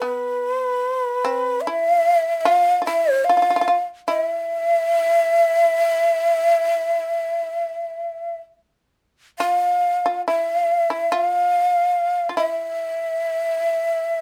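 A light reverb surrounds this short, calm and austere passage of Japanese chamber music, cut from a longer piece, with both instruments heard up front. A breathy, mellow shakuhachi carries the melody in its middle register, its bamboo tone marked by vibrato, tongued attacks and an audible chiff. Beneath it, a plectrum-plucked shamisen plays a second line an octave lower and at a softer level, its fretless voice percussive and buzzing. The beats are uneven and the time breathes freely in rubato over a four-beat metre, with the tuning set slightly above standard pitch. Both parts sound throughout, and the music moves into a new section at 9.4 seconds before the passage ends at 14.2 seconds.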